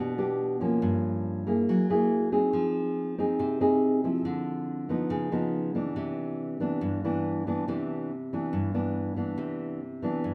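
A sunny, breezy bossa nova excerpt opens on a solo nylon-string guitar, full-bodied and up front with fresh strings and a deep classical tone, its thumb-plucked chords moving from a rootless Em7 through Gm7b5, F#9, Fm7, Dm9 and Db9 to settle on Cmaj9 at 6.0 seconds, all bathed in a moderate echo-chamber reverb.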